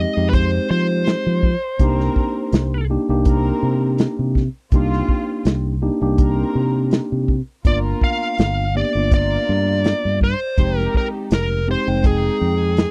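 Mournful and smoky, this short cut from a longer straight-eighth soul blues piece moves at an unhurried pace in a dry, close studio sound with a 1970s character. A mellow, clean tine electric piano carries the accompaniment throughout, while a round, punchy fingered electric bass sits up front beneath it. A dark, acoustic soul drum kit with a tight kick, a medium-tuned snare, hi-hat and a rolled-off top enters at 0.3 seconds, sounding warm and smooth. A picked, overdriven lead guitar states the melody in a dark tone, drops out after 2.9 seconds, and returns at 7.7 seconds as the harmony shifts from minor ninth chords to a tense altered dominant. From 1.8 seconds a veiled, muted chamber string section bows soft-edged sustained chords with vibrato, tucked low behind the other parts.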